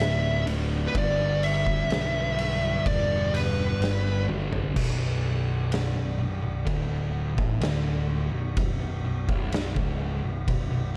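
Ominous and heavy, this stoner and doom metal excerpt crawls at 63 BPM in B minor, with a double-tracked fuzz guitar riff, a growly, round picked electric bass with overdrive, and an oversized low-tuned acoustic drum kit with a punchy kick and a gritty, rolled-off top all running nearly the full length. A compressed, up-front fuzz lead guitar with slapback echo carries the melody only until 4.2 seconds, and a drum fill from 4.3 to 4.8 seconds leads the harmony from D5 and G into B minor. The dark production sits in light reverb and small room ambience.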